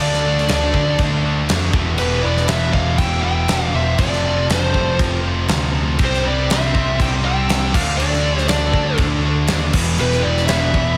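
A growly, punchy overdriven bass sits up front beside a big, tight-kicked rock drum kit in this aggressive, driving hard rock excerpt at 120 BPM, where a biting, overdriven lead guitar carries the melody with slapback echo and analog delay, a dark octave-fuzz lead traces a second line in the background, and a very quiet double-tracked, compressed electric guitar and two bright high-gain guitars pick out the riff through Dm, Em, F and C, all set in a lush hall reverb that gives a big arena sound.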